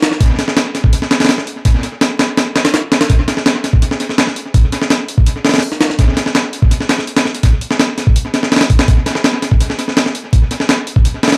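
Wrapped in vinyl crackle, light reverb and a heavy wash of echo, this dark, raw drum and bass fragment, cut from a longer piece, runs a straight 4/4 at 166 BPM for 11.4 seconds on a lone up-front breakbeat kit: a compressed, pitched-up, gritty sampler-style break whose thumpy kick, medium-tuned snare and hi-hat are steeped in tape echo.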